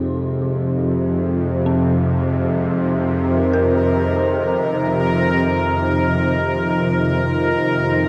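Drenched in a huge, cavernous reverb, this ominous dark ambient drone excerpt drifts in free time in F minor, tuned to A4 = 441 Hz, and holds on a single Fm chord. Up front, a tense, string-like bowed drone with vibrato sits low, while a deep, moody pad fades in behind it with sustained chords and a moving notch. Faint, eerie inharmonic bell arpeggios glint quietly through the haze, and at 3.3 s a resonant, bubbling texture of random filter steps enters in the foreground.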